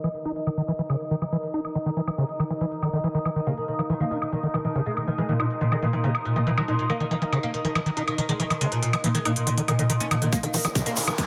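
In a dense, heavily limited mix bathed in lush hall reverb, this alien, driving psychedelic trance excerpt sets a squelchy, distorted acid bass riff with a filter sweep over overdriven hi-hat and woodblock, a background drone of moving overtones, and an airy, breathy pad, before a bright, woody oud melody enters at 3.5 seconds, a tight kick and grainy shaker join at 10.3 seconds, a nasal sequencer bass follows at 10.4 seconds, and an electronic riser begins at 10.7 seconds.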